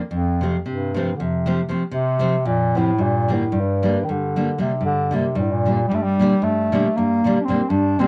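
A cassette home recording steeped in wet studio reverb carries this bittersweet, virtuosic fragment of Balkan folk in G minor, moving in a straight 11/8 at 229 BPM counted in eighths. Up front, a mellow, distant-sounding bass clarinet sings the classical-style solo melody, while a full-bodied nylon-string guitar, fingerpicked on fresh strings with audible finger squeak, supplies deep classical accompaniment as the harmony shifts from F to G minor at 3.0 s.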